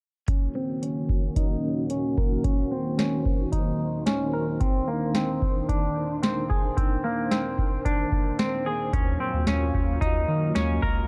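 Melancholic and ethereal, this dream pop excerpt in Eb dorian moves at 111 BPM in a straight 4/4, with a lush, vintage string machine sustaining chords through ensemble chorus and a low-pass filter, a bright, hollow-body semi-hollow electric guitar picking clean arpeggios up front through lush chorus and digital delay, a booming, overdriven analog drum machine with deep kick, crisp snare and metallic hats, and a round, nasal analog bass arriving at 8.9 seconds as the chords pass from Ebm7 through Bbadd9/Eb to Gbmaj7 under a filter sweep, all set in a dark, digital ambience.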